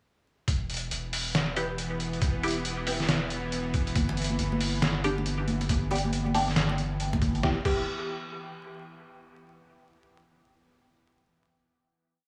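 Deep dubstep in E minor at 138 BPM, heavy and dark, built on a swung, half-time beat where a gritty, thumpy pitched-down kick and an up-front sampler-style kit of snare, hi-hats and crash drive the drop from 0.5 seconds, under a round, soft sub bass playing chopped phrases. A tense, string-like drone with vibrato and built-in reverb hangs behind, while nasal, detuned chord stabs with phaser, chorus and dub echo enter sparsely at 1.6 seconds, and bright, high-tuned congas echo in the background from 4.0 seconds. Vinyl crackle and light studio reverb colour the whole, and the piece settles onto a final E minor chord at 7.4 seconds.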